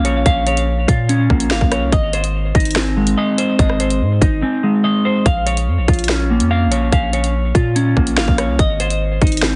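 A clean, hollow-bodied semi-hollow electric guitar plays fingered arpeggios through lush chorus, delay and a low-pass filter over deep, mellow sine 808 bass and a hard-clipped, sharp-snared drill kit in this menacing, cold half-time drill excerpt, where the drums drop out from 4.4 to 5.3 seconds amid a heavily compressed, radio-like sound with light reverb.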